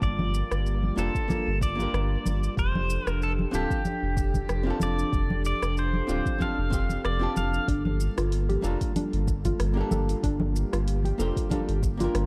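Blissful and sunny, this swung sunset chillout fragment sets a bright, fingerpicked pedal steel melody with slide and delay against a dark, clean archtop guitar, an airy, breathy pad with chorus, an up-front round analog bass, an overdriven deep house kit of hi-hat, rim click and shaker over a deep electronic kick, and ringing low-tuned congas in the background, until at 7.7 seconds the steel drops out and a gentle, wave-folded pluck enters with delayed arpeggios in a dark, lightly reverberant mix.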